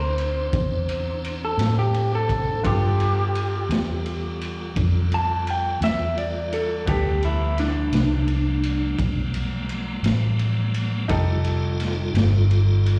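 A slow, swaggering blues in 12/8 opens with guitar, piano, organ and bass sounding together, and the drums join at 0.2 seconds. The electric guitar carries the melody through a small old amp, its fingered tone slightly broken-up, compressed and up front, with plate reverb and slapback echo; it drops out at 9.0 seconds. Underneath, a bright upright piano comps with a worn, woody, slightly detuned sound and audible action noise, sharing the same plate reverb and slapback, while a tonewheel organ holds piping, scooped chords with key click, chorus vibrato and a slow rotary speaker. The muted fingered electric bass sits dark, round and punchy near the front, and a raw garage kit of kick, snare and ride sounds muffled, gritty and boomy, as if in a small room. Moving from Cadd9 to G9 and then F9, this soulful fragment of a longer piece comes across as a live gig heard through the venue's PA, with a recital-hall reverb.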